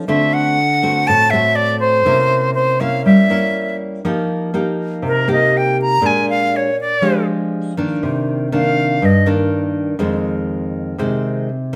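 Fingerpicked nylon-string guitar opens this smooth, intimate bossa nova fragment with an acoustic, classical tone held up front, and at 0.1 seconds a close-miked silver concert flute, airy and reedy with vibrato, enters carrying the tongued melody before moving into a solo at 4.0 seconds, the pair sounding like a band playing live in one stone room with a wet reverb.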